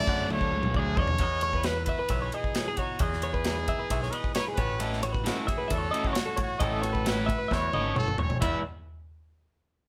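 A bright, pop-style trumpet sits up front and carries a wistful melody through this short cut from a longer math rock and midwest emo piece, set in E major at 133 BPM in a straight 4/4. Beneath it, a warm, clean, compressed twelve-string electric guitar picks arpeggios in a high register, while a second twelve-string enters at 1.2 seconds with twangy accompaniment tucked in the background. A crunchy, double-tracked overdriven guitar plays a riff, drops out at 1.2 seconds and returns at 4.8 seconds. A growling, overdriven picked bass anchors the low end, and an acoustic studio drum kit with a punchy kick, medium-tuned snare, ride and bright cymbals sits up front, adding fills near the start and close. The harmony moves through lush major-seventh and added-sixth colours, from Dmaj7 to Emaj7 and A69, and the band sounds as if it is playing live together in one room with light reverb.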